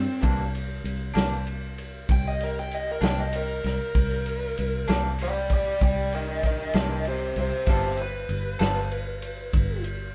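A dark, overdriven lead guitar, picked and up front through a small cranked amp, carries a solo across this short slice of a laid-back, rollicking slow blues in 12/8 at 64 BPM with a straight feel. Beneath it, a round, foam-muted fingered electric bass sits up front, direct and amped, from the opening moment. A second electric guitar through a small old amp enters at 0.2 s with twangy, slightly broken-up, compressed accompaniment colored by harmonic tremolo, moving from C9 to G9 at 7.7 s. An acoustic soul drum kit with a tight kick, medium-tuned snare and dark ride cymbal also comes in at 0.2 s, with a rolled-off top and a distant, roomy character. The band plays live in one room, wrapped in a moderate large studio reverb that lends the whole a relaxed, open air.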